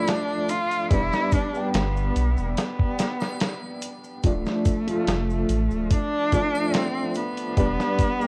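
Worn, warbling cassette tape gives this short trip hop excerpt a pitch drift, framed by light reverb and a small room ambience. The mood is dark and brooding, built on a straight four-beat pulse and a slow sway between D minor and a rootless E minor seventh. Up front, a single bowed cello carries the melody with a rich, nasal, boxy tone, its vibrato and portamento lending an expressive voice, softened at the attack and trailed by tape echo. Beneath it, a dark upright piano plays a mellow, woody accompaniment with long sustain, coloured by tremolo, a low-pass filter and its own tape echo. A dusty, sampler-style drum kit sits forward in the mix, compressed and gritty, with a thumpy kick, a medium-tuned snare and hi-hat, while maracas, triangle and a group handclap stay in the background in a live acoustic room. A deep, round, warm sine sub bass joins at 0.9 seconds with a fast attack and sustained tone, dropping out at 7.8 seconds.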